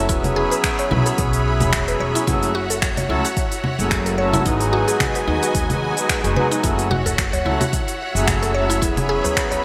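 A reedy, nasal harmonium opens this earthy, hypnotic organic downtempo in F# dorian at 110 BPM, pumping against the sidechain beside a lush, bowed string section with vibrato and a round FM pluck whose bright, chorused and delayed arpeggios sit above a woody, tube-saturated pizzicato upright bass. An up-front afro-pop kit of cabasa, congas, finger snaps and smooth hats, dressed in gated reverb, plays with a gentle 16th-note swing alongside a deep electronic kick, while the harmony moves through E6, F#m7 and G#m7. A vintage, band-limited udu slips into the background at 7.1 seconds, and the whole passage sits in a wet hall reverb with a bright 1980s-style digital sheen.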